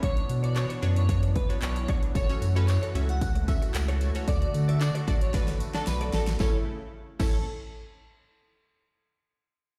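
A euphoric, carefree dance-pop excerpt at 113 BPM in A major opens with punchy, layered electronic drums, a thick, saturated sub bass up front and an airy, dreamy sine-based lead carrying the melody with chorus, vibrato and digital delay. Crisp, detuned wavetable stabs, a smooth soft supersaw holding chords and a clean, direct-recorded electric guitar riff with ensemble chorus fill out a Bmadd9, F#m, D progression, with the lead, stabs, supersaw and bass all pumping to the sidechain, and a jingly tambourine slipping in quietly at 2.2 s. A drum fill from 5.3 s leads into a new section on A at 6.4 s, the dry mix heard through a big sound system in a bare stone room.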